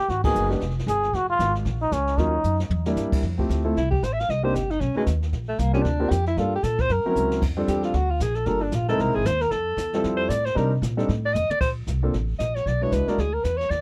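A nasal, straight-muted trombone states the melody over a woody, thumpy upright bass, brushed drums with dark cymbals and a polished grand piano in this playful small-group swing excerpt, until the trombone drops out at 2.6 s and a breathy alto saxophone, with subtone and scooped notes, takes a solo from 3.8 s, captured in a dry, close 1970s-style studio sound with light reverb.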